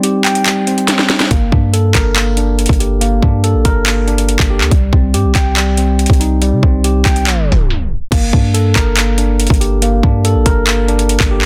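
A tine electric piano sits up front through a low-pass filter, its clean, speaker-boxed chords moving between Cm and Gmadd9 in G minor while a trap drum kit hits hard with a clipped kick, sharp snare, metallic hats, handclaps and crash. This menacing, eerie hip hop and trap excerpt runs at 141 BPM with a half-time feel, and a deep, boomy 808-style bass with a noise layer and dark, decaying tone enters at 1.3 seconds after a short break and drum fill. A tape stop drags the dense, heavily limited, dry mix down around 7.3 seconds before the groove returns at 8.1 seconds.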